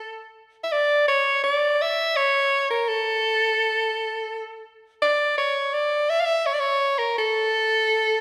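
A soprano saxophone carries this short klezmer fragment entirely alone, its edgy, punchy tone pressed up front with forceful, jazz-inflected phrasing and a singing vibrato. The mood is soulful yet festive, moving in an unhurried three-beat lilt with a straight feel. The saxophone stays within a compact upper register, from A4 up to F5, so the line feels focused and urgent. A wet recital-hall reverb surrounds it, and the listener seems placed further back in the room, letting the hall's tail bloom around each phrase. Cut from a longer piece, the recording lasts just 8.2 seconds, a brief glimpse of a larger performance.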